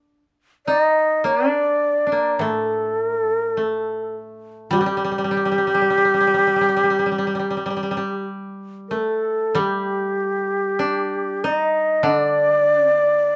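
A moderate studio reverb gives this short cut from a longer piece of Japanese chamber music a modest sense of space, while the instruments themselves stay close and unadorned. The mood is austere and meditative, with a slow, rubato pulse hovering around 47-52 BPM in 4/4. A koto opens alone on a second line in its middle register, its fingerpicked tone woody and dry, and at 0.7 s a mellow bamboo shakuhachi enters up front with the melody, airy and end-blown, its tongued notes shaded by vibrato. From 2.4 s a second koto adds a lower accompaniment, sitting softer behind the other two with the same acoustic, plucked character. Near 9.6 s the music moves into a new section, and the trio carries on together to the close of the cut.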